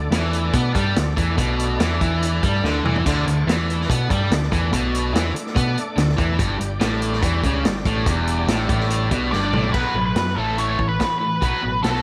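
Swaggering and gritty, this classic rock excerpt is driven by two bright, picked electric guitar riffs, one distorted and one overdriven with spring reverb, over a round, dark dub-style picked bass and a punchy vintage drum kit with dark cymbals and drum fills at 2.6 and 9.3 seconds. A shouting tonewheel organ with key click, chorus vibrato and slow rotary speaker holds sustained chords in the background until 9.7 seconds. An up-front octave-fuzz lead guitar with wah enters at 9.3 seconds to carry the melody, all in a small room with light reverb.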